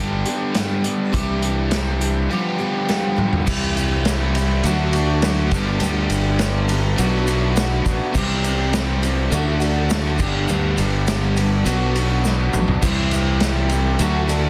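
An overdriven, double-tracked electric guitar riff with spring reverb opens alongside a shimmering, octave-doubled twelve-string acoustic and a growly, punchy fingered bass, with a vintage kit entering at 0.3 seconds and a drum fill at 2.9 seconds leading into the next section at 3.5 seconds. This nostalgic folk rock and heartland rock excerpt moves at 103 BPM in a straight 4/4 over G, Cadd9 and G7, then C, D, G and Bm, its up-front drums sounding dark-cymbaled and roomy with a pumping room sound and rolled-off top. A grainy, close and dry tube shaker joins in the background at 3.5 seconds, and the bright, fresh-stringed acoustic shimmers within the dense, heavily limited master.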